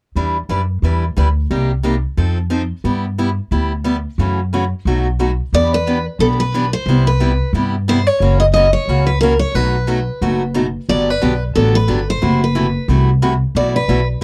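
A swinging, virtuosic stretch of acoustic string swing in the jazz manouche style, lifted from a longer piece, opens with a picked steel-string guitar comping on its bright dreadnought voice alongside a thumpy, woody upright bass plucked on gut strings, both sitting up front. At 5.5 seconds a second picked guitar enters with the melody, its boxy parlour tone carrying fresh-string sparkle and audible finger squeak, touched with a slapback echo. The recording is dry and close, in the manner of a 1970s studio, with the chords moving through minor-key changes such as Em7, F#7 and B7.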